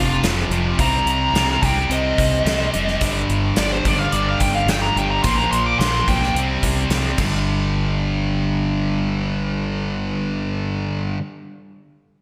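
A straight, driving 4/4 pulse from a gated 80s drum kit with punchy kick, fat snare and bright cymbals carries this heavy hard rock excerpt, where a biting lead guitar plays an overdriven solo melody until 6.3 seconds over riffs from a high-gain distorted guitar and a sludgy distorted guitar, a growling fingered electric bass churns underneath, and a drum fill at 7.2 seconds comes just before the kit stops at 7.3 seconds, set in a bright 1980s-style digital production with lush hall reverb.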